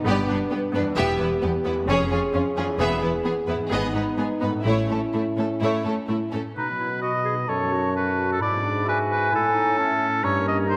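A clear, up-front solo oboe carries a second line in the closing stretch of this triumphant, heroic cinematic adventure cue, a passage cut from a longer score, moving at 131 BPM in a straight 4/4. The opening section builds over its first 6.6 seconds. A mellow, distant French horn section holds sustained chords while a focused, close violin section sings the melody above an intense symphonic violin section on a second line. A rich viola section fills in the accompaniment, and smooth cellos and double basses anchor the bass, every string section bowed with vibrato. A concert harp plays fingerpicked, ringing arpeggios in the background throughout. At 6.6 seconds the colour shifts to woodwinds and brass, as the oboe enters alongside a bright clarinet and a hollow silver flute on second lines over the trombone section's tight, warm sustained chords, while the harmony travels from G through E and A to B and a closing D#7/G, all set in a wet scoring-stage reverb that lends a spacious hall sound.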